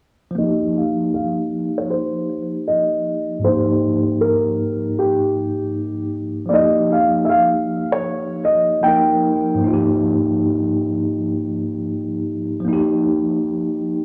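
A felt-muted upright piano carries the melody up front, its soft, intimate tone rounded further by a low-pass filter and an analog delay as it moves between G4 and G5 from 0.4 seconds. This is a nostalgic, hazy hip hop piece at 78 BPM in 4/4 and F minor, with a swung sixteenth-note feel, cut from a longer work. Underneath, a tine electric piano plays the accompaniment on an F9sus4 chord, sounding clean and up front through its built-in speakers, and colored by cassette tape and a low-pass filter. A filter sweep runs through the opening stretch, and after the piano melody stops at 9.6 seconds a break follows. From 12.7 seconds a new section begins, with a filter sweep on the electric piano. The whole is set in a wet recital hall reverb, captured as a dry, gritty hardware recording with a cassette tape character.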